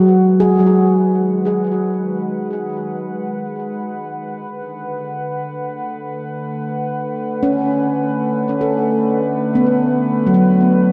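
Ambient excerpt at 57 BPM, melancholic and spacious, where a warbly, detuned tape-like pad with chorus fades in beneath ringing, bright handpan arpeggios carried on tape echo, moving from G#m7 to Bm7 at 4.3 seconds inside a lush hall reverb.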